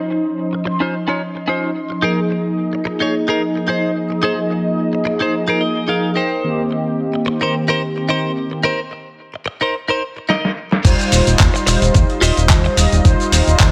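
Nu-disco at 109 BPM in Eb mixolydian, sunny and feel-good, opens with mellow, round synth brass and a lush, airy unison pad in the background, both pumping with sidechain, while a twangy, up-front clean electric guitar plays a riff through chords from Dbmaj9 to Bb7sus4 and Cm7, with a guitar fill at 5.3 seconds and filter sweeps on the synths. A dusty soul drum kit enters with a fill at 10.3 seconds, and the drop arrives at 10.8 seconds on an Eb69 chord, bringing in a fat, detuned analog bass and a gritty, overdriven kick as the kit carries on with handclaps, shaker, hi-hat, snare and crash. The short excerpt sits in light digital reverb, its guitar and brass trailing tape echo.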